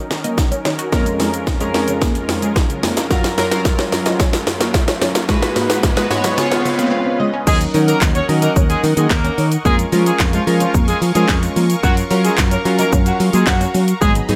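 A punchy, up-front house drum kit with a cracking snare, handclaps, shaker and crash drives this confident, bittersweet dance-pop excerpt in Eb minor at 110 BPM, with a drum fill running through the opening build-up. A sidechain-pumped soft supersaw, a lush unison pluck arpeggio with tape echo, glossy retro synth keys and a twangy, chorused twelve-string guitar riff sit under a filter sweep as a very quiet riser sounds. At 7.5 seconds the drop arrives with a round, dark fingered electric bass and a distant, tightly doubled horn section carrying the melody over Ebm7, Bbm7/F and Gbmaj7, all in light digital reverb.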